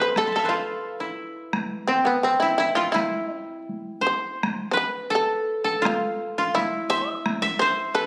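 A bright, woody koto played with fingerpicks sits up front as the second line beside a buzzing, powerful plectrum-plucked shamisen carrying the melody, while heavy-stick taiko drums enter at 0.2 s and stop at 7.4 s in this calm, austere excerpt of traditional Japanese chamber music in E miyako bushi, moving at a rubato 84 BPM in 2/4 and captured on a phone in a recital hall with moderate reverb, added club reverb and compression.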